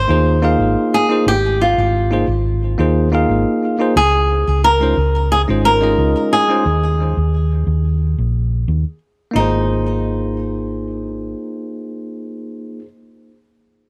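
Sunset chillout at 89 BPM in Ab major, blissful and sunny, moving through Ab69, Dbmaj9 and Ebsus4 before returning to Ab69 at 9.4 seconds in this fragment of a longer piece. A fingerpicked flamenco guitar with fresh strings carries the melody up front, its finger squeaks audible under a digital delay. A bright, clean, bell-like tine electric piano, also with digital delay, supplies accompaniment, while a round, dark hollow-body short-scale electric bass, played with the fingers, anchors the low end until it stops at 11.3 seconds, all in a light reverb.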